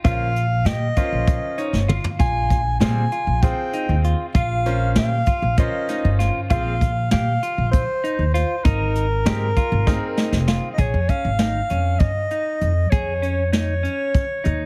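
Heavily compressed and radio-like, with a light reverb, this driving, tense progressive instrumental excerpt moves in 7/8 as brushed jazz drums with a boomy kick and a woody pizzicato upright bass sit up front. A breathy, whispered soprano saxophone carries the melody with a soft attack and light vibrato, while a dark, clean electric guitar plays fingered arpeggios under chorus and delay. A bright, brilliant grand piano with audible action noise comps and adds a fill before dropping out at 10.7 s, leaving the band on a rootless Bbm7, with drum fills marking the turns at 1.7 and 9.9 s.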